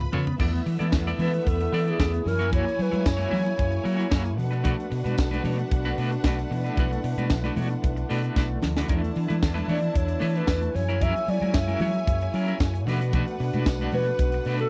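A dry, close 1970s-style studio recording of a glamorous, danceable disco groove at 113 BPM in B dorian, cycling through E7sus4, F#7 and Bm7. Up front sit a tight funk drum kit with a high-tuned snare and punchy, overdriven fingered electric bass, joined by a bright, clean electric guitar with tremolo and a lush, bowed string section as a second line. A warm French horn section holds sustained chords in the background alongside thin-skinned congas and a jingly tambourine, while an airy, wooden-headed alto flute carries the melody from 1.2 to 4.1 seconds and again from 9.7 seconds, with a drum fill marking 8.4 seconds.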